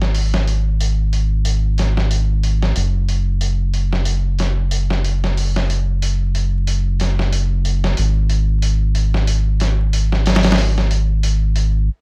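Trip hop with a cinematic, smoky mood, this short excerpt of about 12 seconds is cut from a longer piece and rides a lightly swung groove. A round analog bass sits up front throughout, deep and dark, blending sawtooth and sine tones with ring modulation and tube saturation, its fast attack giving way to sustained, evolving notes low in the register. Sampler-style drums play hi-hat and snare from the start until about 11.7 seconds, sounding compressed, pitched down and muffled, with a medium-tuned snare pushed through overdrive and high-pass filtering. The kit has the sound of being re-recorded in a small room, and it also sits up front. The whole mix is dry, with little reverb, and carries the rough feel of a home demo dusted with vinyl crackle.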